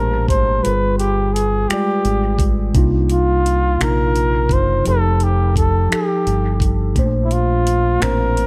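Slow R&B in a lilting six-eight metre, this short excerpt feels sensual and intimate, moving through lush extended chords that settle back home by the final bar. A breathy flugelhorn carries the melody up front, its whispered, soft-attacked notes scooped and shaded with vibrato and trailed by dub echo. Beneath it, a mellow tine electric piano offers clean, direct accompaniment across a broad range. A deep, dark fingered electric bass sits round and amped in the foreground, anchoring the low end. The electronic drum kit enters at 0.3 seconds with finger snaps, metallic hi-hats and a knocking kick, all produced and close, while light reverb and an echo-heavy mix lend the whole a dreamy, late-night glow.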